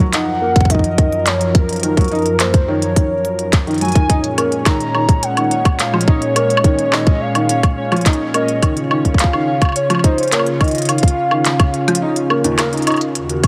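A detuned analog pad with lush chorus and a felt-muted upright piano open this melancholic, eerie IDM excerpt together, the piano's soft, intimate arpeggios trailing off into dub echo beneath the pad's smooth sustained chords. Almost at once a warbling, nostalgic lead carries the melody, its mellow tone coloured by chorus, tremolo, vibrato, cassette tape and delay. The straight 4/4 groove comes from a tight, up-front electronic kick and an organic electronic kit of handclaps, crisp hi-hat and woodblock, both tape-tinged and re-recorded in a small room. At 4.1 seconds a very quiet, bright gated texture begins pulsing in time, faint beneath the other parts. The harmony moves from Gbmaj7 to Bbm7 and then to Db, and the kick drops out at 12.0 seconds, leaving the other parts to carry the final moments. Light reverb and heavy compression give the whole piece a squeezed, radio-like sound.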